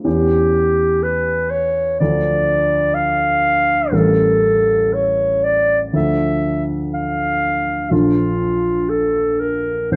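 In a slow, rubato 4/4 at 57-64 BPM, this melancholic, yearning romantic classical duo in D minor, cut from a longer piece, sets a mellow, distant clarinet melody up front over a dark grand piano accompaniment that starts at 0.0 s, with the clarinet entering at 0.1 s over a progression of C#dim/E, Dm, A7b9, Dm and Bbmaj7, all in a moderate large-studio reverb.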